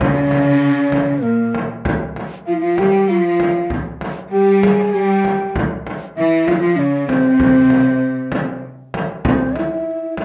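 A hollow, airy alto flute carries the melody up front in this stately, festive Persian modal ensemble piece in dastgah homayun on C, moving at 97 BPM in 3/4 with a straight feel. A breathy, end-blown ney traces a second line above it, while a lush bowed cello section with vibrato adds a further line beneath until 8.6 seconds. A deep frame drum sounds distant in a large room, all within moderate studio ambience, and the music shifts into a new section at 9.2 seconds before this cut from a longer piece ends.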